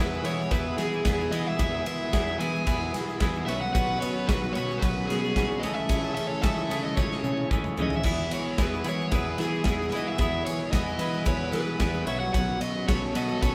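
Jangly and carefree, this indie rock passage moves at 112 BPM in a straight 4/4 in E major, cut from a longer piece and played by a band together in one room with moderate studio reverb. A crunchy overdriven guitar carries the melody over the harmony. Beneath it, two picked twelve-string electric guitars ring out the riff: one bright and twangy, sitting in the background, the other warm, both clean and compressed. A distant, roomy trumpet with light vibrato and scooped notes adds a punchy second line in the background, while a soft, breathy pad with slow attack, long release and chorus hovers very quietly underneath. A round, fuzz-laden picked bass anchors the low end. A big acoustic rock kit sits up front with a tight kick, medium-tuned snare, toms and glittering cymbals, joined by a grainy egg shaker, close and dry; the chords move from E through Bsus2 and Amaj7/C# and back, and a drum fill lands from 7.0 to 8.0 seconds.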